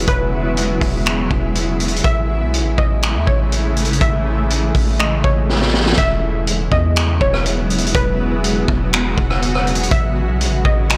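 A blown-out, overdriven mix wrapped in light studio reverb frames this floating, dreamy excerpt of atmospheric cloud-rap, riding a half-time feel over chords that move between E69 and Amaj7. A blurred, granular cloud pad sits up front, pumping under sidechain, while a deep, mellow 808-style bass holds long sustained tones beneath a punchy vintage kit of kick, high-tuned snare with soft clipping, hi-hat, rim click and finger snaps. A glassy, crystalline wavetable pluck with chorus, low-pass filtering and tape echo carries the melody from 0.1 seconds, and a drum fill at 5.5 seconds leads into the second section.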